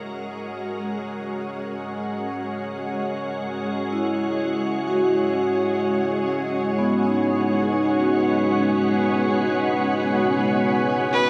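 A soft, organ-like pad carries this melancholic, spacious ambient excerpt, fading in from the start with pure, detuned tones, a sub octave beneath and a slow, evolving swell of ensemble chorus and its own built-in reverb, sitting bright and up front. The slow 63 BPM pulse in 4/4 moves unhurriedly from a G#9sus4 chord to C#m7. At 3.9 seconds a vibraphone played with medium mallets enters with ringing, metallic arpeggios, its motor off and its close-miked, dry, full sound trailed by tape echo. A single amplified electric violin appears at 11.1 seconds, just as the piece is cut, holding one intense, bowed note with vibrato, prominent and loud. The whole recording floats in a long shimmer reverb and carries the soft grain of cassette tape.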